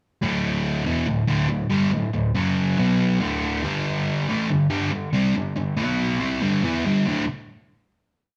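Confident and swaggering, this short rock piece moves at 140 BPM in a straight 4/4 feel in D major. A single sludgy electric guitar carries the whole thing alone, its dark, overdriven tone picked and double-tracked so it sits heavy and up front. From 0.2 seconds it drives a power-chord riff built on D5, F#5, B5 and G5, ranging from D2 up to E4. At 7.1 seconds the riff resolves onto a final D5 chord. A large studio reverb gives the sound a roomy, live-in-the-room wash.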